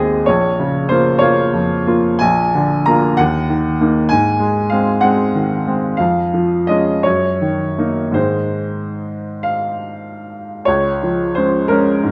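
A bright, woody upright piano sits up front from the very start, playing a hopeful, romantic character piece in Db major with a gently rubato 6/8 lilt at roughly 44-66 BPM in dotted quarters. The solo line moves through a tender harmonic arc from Bbm and Bb7 to Ebm and Ab, then to Db/F, Ebm/Gb and Ab, before settling onto Db at 10.7 seconds as the opening material begins again. Moderate reverb from a scoring stage surrounds the brilliant, open piano tone within a dark, warm production, and this brief fragment of a longer piece closes at 12.1 seconds.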